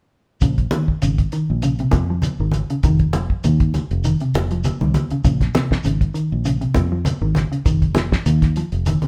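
Afrobeat at 100 BPM in Bb minor, driving and defiant, with a lightly swung sixteenth feel, cut from a longer piece and played live in one room with light reverb. A dark, clean electric guitar picks out fingered arpeggios over a round, foam-muted electric bass, while a cloth-damped drum kit, dry and fat in the snare with a tight kick, sits up front beside low-tuned congas struck with hard hands. A grainy shekere rustles in the background as the chords move between Bbm9 and F5, and the drums close with a fill at 8.9 seconds.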